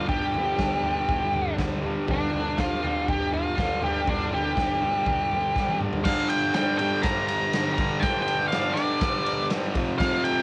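An octave-fuzz lead guitar, dark and distorted with a cassette-tape grain, carries the melody from D4 to Bb5 over a double-tracked, compressed fuzz guitar riff sitting up front in the mix and a punchy, saturated garage drum kit in a small room, driving a gritty, raw G minor garage rock excerpt at 121 BPM from a G5 opening through a drum fill at 5.6 seconds into a Gm section before landing on F5 at 9.8 seconds.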